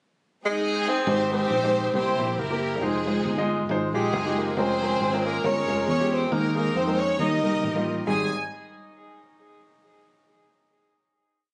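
A breathy, whispered tenor saxophone with tape echo sings intimate, jazz-style song phrases from 0.5 s beside a lush, bowed symphonic string section's call phrases, which begin at 0.4 s, in this hopeful, uplifting uptempo gospel piece at 137 BPM in Ab major, while a warm baby grand piano adds rhythmic drop2 chords and a punchy, foam-muted fingered electric bass walks and runs with slides and chromatic approach notes from 1.1 s, captured on a phone in a studio room with echo chamber reverb and compression before a closing Abmaj7 chord at 8.1 s.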